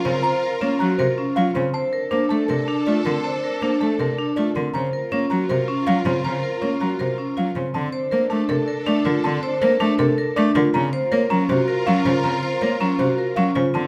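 Hypnotic and bright, this excerpt of minimalist classical pattern music moves at 160 BPM in a straight 4/4, with a ringing, metallic vibraphone playing arpeggios up front, a buzzing, woody marimba with soft mallets carrying the melody, a close, expressive bowed cello adding accompaniment with vibrato and portamento from 0.1 seconds, and a lush symphonic string section holding sustained chords that alternate between Gbmaj7 and Bbmaj7, all set in a moderate recital hall reverb.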